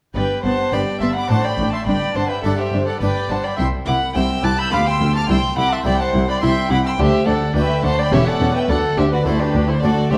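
Lively and festive, this short passage, cut from a longer baroque-style concerto movement with solo episodes, moves in a straight three-beat metre. A single bowed violin with a dark, nasal, gut-string tone sits up front with the melody, while a period-style chamber violin section with a rich, smooth top carries a second melodic voice and another section, warm and close, plays a supporting line. Reedy violas in the background and gut-strung cellos fill the accompaniment and bass, anchored by a bowed double bass section, all with light vibrato. A dry, close-miked French-style harpsichord, plucked with two sets of strings and a full sound, sits in the background from 0.1 s. The harmony moves from G through D7/A and C to close on D around 8.7 s, and every part sounds through to 10.2 s in a wet recital-hall reverb.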